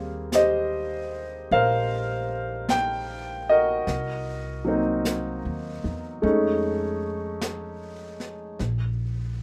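A lightly reverberant, intimate studio sound frames this short excerpt of a slow, melancholic jazz ballad at 51 BPM, swung in 4/4. A clear, up-front grand piano, its action noise audible, carries the accompaniment over Eb69, Cm7b5 and F7alt chords until 8.6 seconds, while a woody, thumpy pizzicato upright bass sits lower in the mix. Brushes on a dark, high-tuned snare and hi-hat join at 0.3 seconds, and bass and drums carry on to 9.4 seconds.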